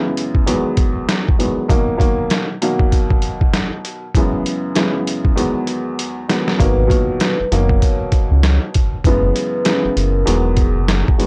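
A dark, woody upright piano opens this gritty boom-bap hip-hop excerpt in G# minor at 98 BPM, its filtered chords with audible action noise soon joined by a compressed, muffled, pitched-down sampler-style kit with a thumpy kick and medium-tuned snare that swings on the 16ths and rolls into a fill at 5.4 seconds. At 6.6 seconds a round, detuned analog bass with tube saturation enters up front, while a soft-mallet vibraphone carries a band-limited, ringing melody with slow motor vibrato and analog delay in the background. The sound is dry and tough, with a cassette-tape grit over the whole fragment.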